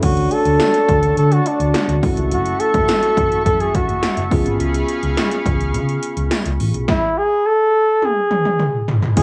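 A straight 4/4 pulse at 105 BPM drives this moody, nostalgic 1980s-style pop excerpt on a home cassette recording, where an up-front flugelhorn carries the melody with light vibrato, scooped notes and tape echo over a bell-like tine electric piano, a lush, detuned unison pad with slow attack and chorus, a dark, round picked hollow-body bass with tube saturation, and punchy analog electronic drums with gated snare, gated reverb on snare and toms and metallic hats, while a jingly background tambourine plays from 0.6 to 6.4 seconds, the chords move from Dmaj7 through F#m7 and C#7, and a drum fill closes from 8.0 seconds.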